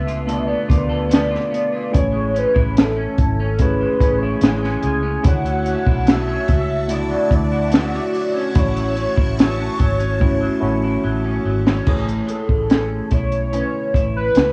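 A relaxed 72 BPM pulse in straight 4/4 comes from a compact cocktail drum kit sitting up front, its punchy kick, high-tuned snare, hi-hat and crash carrying a dark, rolled-off sound, with a drum fill from 10.2 to 11.9 seconds leading into a new section. This is a nostalgic, laid-back stretch of indie and bedroom pop in A major, cut from a longer piece, with chords moving from Dm6 through Amaj7, Dmaj9 and A6 before settling back on Amaj7. A vintage muted fingered bass holds the low end with a round, foam-muted tone, while an electric guitar through a small old amp adds bright, twangy, slightly broken-up picking soaked in lush chorus and warbly pitch drift. A worn, slightly out-of-tune tine electric piano fills the middle with a cassette-tape character, and a velvety synth lead carries the melody with detuned unison, vibrato, subtle chorus and analog delay. From 5.2 to 11.8 seconds a swirling phased string machine adds soft sustained chords in the background, and the whole mix sits in light reverb and small room ambience with a worn, warbling old-tape quality.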